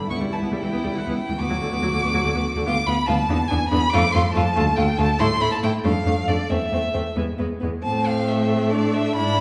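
Heard from further back in a recital hall, this short string quartet passage arrives through a wet, lingering reverb. It is a quick, dramatic and restless classical-period movement in a lilting 6/8, shaped with a flexible rubato. The clear, focused first violin carries the melody high and up front, with a singing vibrato that still sounds slightly distant. Beneath it, the second violin adds a smooth, even inner line, the viola supplies an expressive accompaniment coloured by portamento, and the cello anchors the bass with a focused tone and a smooth top. All four players stay together from start to finish, and the three lower parts share a rich, full-bodied sound. Shadowy half-diminished and diminished chords move on through F and D minor toward A minor, until a new passage begins at 7.8 s before the excerpt breaks off at 9.4 s.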